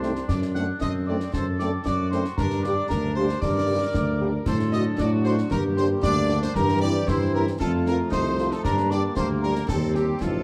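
Heard from further back in a room with light reverb, this short excerpt of a military-style march for wind band moves at 115 BPM in a straight 2/4, with a rousing, spirited mood. The trumpet section carries the melody with light vibrato and a smooth top, while a hollow, wooden-toned piccolo sings a pure, distant second line high above, joined by a roomy woodwind section on another second line. In the background, the French horn section fills in accompaniment and the mellow trombone section holds sustained chords with a soft, loose attack. The tuba stands up front as the clearest voice, playing a warm, soft-edged bass line. Concert snare drum, clash cymbals and concert bass drum sound close and dry, with dark cymbals, as the harmony moves from D7/F# through Gm, C/G and F before settling on Cm/Eb near 9.7 seconds.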